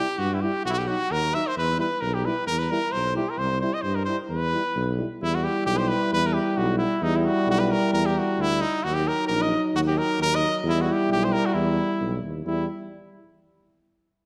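Set in the wet bloom of a scoring stage, this fiery, virtuosic Balkan brass band piece in E Hungarian minor swings along in 2/4 at 132 BPM, with a punchy, up-front trumpet melody tinged with slapback echo and light vibrato, soaring over a clear, soft-attacked euphonium and a close-miked, mellow euphonium, both supporting from the background, while a smooth-topped tuba joins the bass line at 0.2 seconds and the harmony darkens to D#m at 8.8 seconds before settling back on Em.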